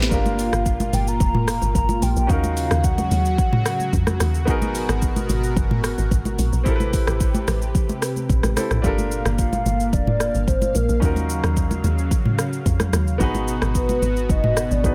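A deep, round log drum bass with a fast attack and dark decay drives this soulful, hypnotic amapiano excerpt at 110 BPM, joined by an up-front electronic drum kit with a sharp snare, a smooth sawtooth pad with chorus and sidechain pumping, a brilliant concert grand piano, damped background congas, and a hollow, woody clarinet-like synth lead with vibrato and tape echo that plays from 0.1 to 4.2 seconds and returns at 9.4 seconds over minor seventh and minor ninth chords in a dry mix.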